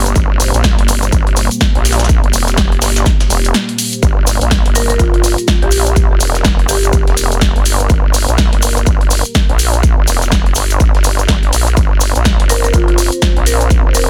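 A dense, heavily limited and fairly dry mix opens this swaggering, bouncy bass house cut in G minor at 124 BPM, swung on the 16ths, with a punchy, up-front electronic kick and a nasal, resonant vowel-sweep wobble bass pumping against a deep, moody analog pad sitting in the background. A layered house kit with tape-warm hats and a punchy snare, a grainy, bright tube shaker and a very quiet, gritty sampler-style soul kit fill out the groove, which drops into a brief break at 3.5 seconds. A woody, hard-mallet marimba with 12-bit sampler grit and delay adds melody from 4.8 seconds and returns at 12.5 seconds.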